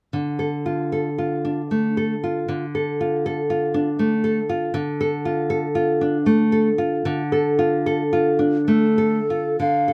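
In a rubato 3/4 that drifts between 60 and 83 BPM, this melancholic, yearning romantic duo in D minor opens at 0.1 seconds with a fingerpicked nylon-string guitar, full-bodied and up front, settling on a D minor chord with the occasional finger squeak. At 8.7 seconds a hollow, airy tenor recorder enters with the melody, its tongued chiff and gentle vibrato set in plate reverb. The whole sits in a light reverb and is cut from a longer piece.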